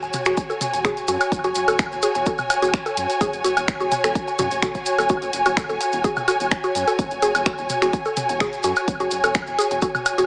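A straight 4/4 pulse comes from a punchy, up-front electronic kick entering at 0.4 s, a house kit of finger snaps and warm hats thrown into dub echo, tape-flavoured electronic woodblock and toms carrying the same echo, and grainy maracas tucked in the background. In this quirky, cool minimal techno excerpt, a rubbery, nasal square bass with a moving notch and a woody, round mallet-like FM pluck with chorus and dub echo bounce under the sidechain pumping that also breathes through a dark, lush symphonic string section with expressive vibrato. A moderate plate reverb and an echo-heavy mix sit on a small-speaker sound with faint mains hum.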